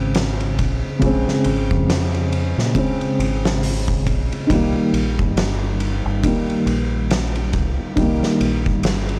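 Hypnotic and brooding, this short trip hop excerpt, cut from a longer piece, moves at a slow 69 BPM in 4/4 with a 16th-note swing, sitting in Bb dorian over a Bbm7 to Cm7 change at 4.5 seconds. A felt-muted upright piano carries the accompaniment up front, its thick-felt tone mellow and intimate, with audible action noise, harmonic tremolo and tape echo giving it a vintage cast. Beneath it, a deep dub fingered electric bass plays round and dark, sounding direct and amped. An oversized, low-tuned acoustic drum kit enters at 0.1 seconds with a boomy kick, fat snare, hi-hat and dark ride cymbal, saturated and gritty in a bright stone room. The whole recording has a dry, hardware-made feel in a small room, with vinyl crackle running underneath.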